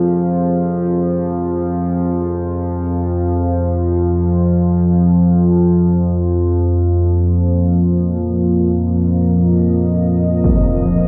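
A huge ambient reverb with a long tail surrounds this dark, ominous excerpt of dark ambient drone in free time and F minor, resting on a single F minor chord. Up front, a mellow analog drone with a detuned, warbling sawtooth and pulse-wave tone sustains low notes with chorus, while a deep, moody pad with a sub octave and moving notch holds chords in the background, wrapped in chorus and shimmer reverb. At 10.4 seconds, a huge, bright impact passed through a low-pass filter strikes once near the close.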